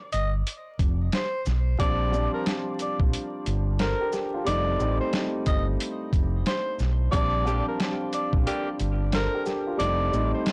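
Blown-out and overdriven with vinyl crackle under light reverb, this nostalgic, soulful boom-bap hip-hop excerpt in Bb major rolls at 90 BPM with a swung feel, as a gritty, pitched-down sampler drum kit with a thumpy kick and a round, amped fingered electric bass carry the groove beneath a breathy tenor saxophone solo full of scooped notes and vibrato, joined at 1.8 seconds by a dark, mellow grand piano with cassette-tape coloring and briefly punctuated from 7.5 seconds by tight, clear saxophone-section stabs.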